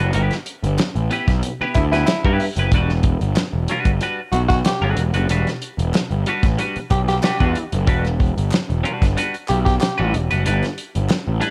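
A growling tenor saxophone carries the second line from 1.7 seconds, breathy and raspy with a soft attack, scooped notes and jazz-style vibrato, staying in a narrow band from E4 to G4 until 10.2 seconds. Beneath it, this funky, driving funk excerpt in E minor moves at 93 BPM in a straight 4/4, shifting from G6 to Em9 and back to G6. A fuzz-soaked picked electric bass sits up front with a warm overdriven tone, while a bright, twangy clean electric guitar supplies compressed picked accompaniment dressed in lush chorus. The soul drum kit, played in a small room, offers a fat snare, tight kick and hi-hat with a rolled-off top, and a crisp, close group handclap sits very quietly in the mix. Studio reverb and a cassette-tape character give the whole fragment a warm finish.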